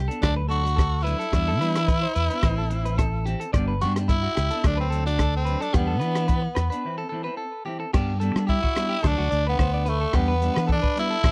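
Lightly swung sixteenths in 4/4 drive this danceable, warm highlife guitar band cut from a longer piece, with a compact cocktail drum kit up front laying down a punchy kick, rim clicks, hi-hat and crash under a rolled-off top, while a fingered electric bass adds a round, amped low end. A bright, compressed clean electric guitar picks arpeggios through tape echo, and a semi-hollow electric guitar supplies hollow-bodied accompaniment as the chords cycle through D, Em7, Am and G. A breathy, raspy tenor saxophone carries the melody with vibrato and a gritty edge, and a break arrives at 6.8 seconds before the next section at 7.9 seconds, all captured in a dry, close 1970s-style studio sound.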